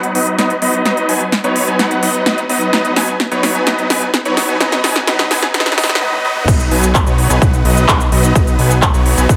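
Huge, detuned supersaw chords carry the riff of this triumphant, anthemic festival progressive house excerpt at 128 BPM in B major, pumping under sidechain with tape echo and a filter sweep through the build-up, while an overdriven big-room kit of crash, handclaps, crisp hi-hat, shaker, punchy snare and toms plays fills until the drop at 6.5 s brings in a layered electronic kick and a thick, saturated analog bass, the whole mix sitting in a lush hall reverb.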